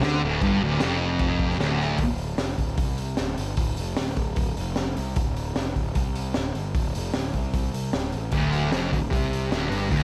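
Garage rock at 152 BPM with a swaggering, raw mood, this excerpt opens on a thick, double-tracked fuzz guitar riff over Dm that drops out at 2.0 s as the harmony shifts to D5 and returns at 8.3 s, while a round, punchy overdriven picked bass and a crunchy, saturated breakbeat kit with dark cymbals, a high-tuned snare and a tight kick drive up front in a moderate stone room.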